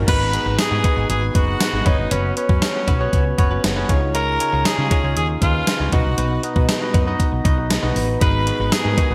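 A straight 4/4 groove from a gated digital drum machine, with its thumpy kick and gated-reverb snare up front, drives this nostalgic, dramatic 1980s-style pop excerpt, where a raspy tenor saxophone carries the melody over bell-like tine electric piano with subtle chorus, a woody, growly fretless bass, a very quiet picked clean electric guitar riff and a faint, smooth bowed violin section, set in a bright digital production with moderate hall reverb.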